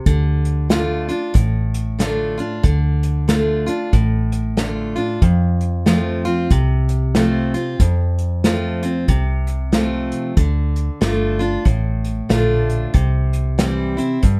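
A dark, warm production with light reverb frames this short cut from a longer honky-tonk and classic country piece, its mood dusty and heartbroken. A bright, full-bodied picked steel-string acoustic guitar sits up front as accompaniment, entering at 0.0 seconds and carrying the harmony from D minor through F and back before landing on C near the close. Beneath it, a vintage muted fingered electric bass gives a round, foam-muted tone from an amplifier, holding down the low end. The unplugged drum kit, heard in a small, airy room, adds a punchy kick, a medium-tuned snare and hi-hat played with bundle sticks, and it also sits up front with a polished finish. The swung eighth notes in 4/4 give the whole groove a loping, rueful sway.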